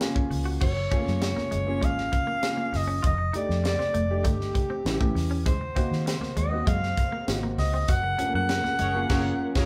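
A breathy, up-front alto saxophone carries the melody with vibrato over breezy, glossy 1980s jazz-funk pop at 99 BPM in F# major, backed by an intimate grand piano with audible action noise, a tight funk drum kit with a high-tuned snare, a dark, round, foam-muted fingered bass, a clean picked semi-hollow guitar riff in the background, very quiet low-tuned congas and veiled con sordino strings, and a clear horn section with octave doubling joins at 8.8 s during a band accent, the whole band sitting in a short, wet room reverb.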